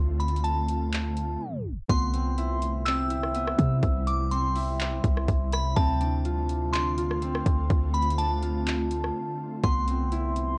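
Blissful and floating, this atmospheric cloud-rap clip from a longer hip hop piece moves in a half-time feel, with an ethereal, detuned pad holding sustained chords through ensemble chorus, sidechain pumping and cassette-tape haze while a deep, boomy 808-style bass sits up front. A crystalline FM bell carries the high melody through phaser, low-pass filtering and analog delay, and a trap kit of hard-clipped kick, metallic hats, handclaps and rim clicks drives beneath it. After a tape stop and break at 1.4 seconds, a fingerpicked acoustic Celtic harp enters at 1.9 seconds with ringing arpeggios, adding a home-recorded, lo-fi intimacy to the light digital ambience.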